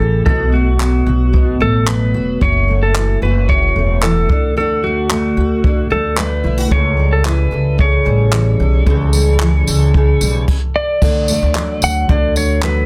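Acoustic pop at 112 BPM in 4/4 with a straight feel, this sunny, heartfelt passage in D major is tuned to A4 = 445 Hz and is cut from a longer piece. A clean lap steel guitar carries the melody between F#4 and F#5, played with fingerpicks and slide, its compressed, scooped tone shaped by volume swells. Beneath it, a double-tracked, fingerpicked dreadnought steel-string acoustic guitar gives full-bodied accompaniment, while a woody, growly pizzicato upright bass with steel strings sits up front. A jazz brush drum kit enters at 0.3 s with a dark, smooth character, including dark cymbals, a boomy kick and a rolled-off top, alongside crash cymbal, handclaps and tambourine, with soft clipping on the snare. The harmony moves through B5, F#m7, D and A7, and a stop from 10.5 to 11.0 s leads into a new section on D. The room is nearly dry, and the dense, heavily limited modern master keeps the sound close and loud.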